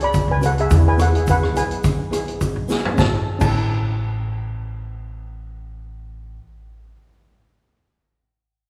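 A wet concert-hall reverb with a 2.2-second tail surrounds this short, festive calypso fragment, cut from a longer piece and tuned a little flat to A4 = 435 Hz. At a bouncy 106 BPM in straight 4/4 and A major, a lead steel pan carries the melody with a dark, smooth tone from hard rubber sticks. A double-seconds pan plays the accompaniment beneath it with medium rubber sticks, its sound airy, and both pans ring metallic and shimmering. Up front, a pizzicato upright bass on steel strings gives a woody foundation. A street-band drum kit, also up front, adds a boomy kick, a medium-tuned snare, hi-hat, rim clicks, toms and crash cymbal with a rolled-off top, while a grainy, bright egg shaker sits in the background. The harmony moves from F#sus2 to E and lands on A at 3.0 s, just after a drum fill at 2.7 s, and the drums and shaker stop at 3.6 s, leaving the pans and bass to finish.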